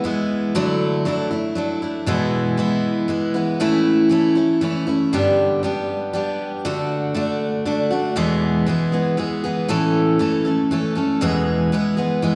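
A straight-feel country piece in 3/4 at 118 BPM, this nostalgic, down-home track in A major is cut from a longer performance and features a lone picked steel-string acoustic guitar playing from 0.0 to 12.4 s. The dreadnought sounds bright, full-bodied and up front, with fresh strings ringing from E2 to A4 through changes like E, Dadd9, A, G and D before a new passage begins at 9.7 s. A wet concert-hall reverb with a 2.3-second decay surrounds it, giving the impression of a church or concert hall.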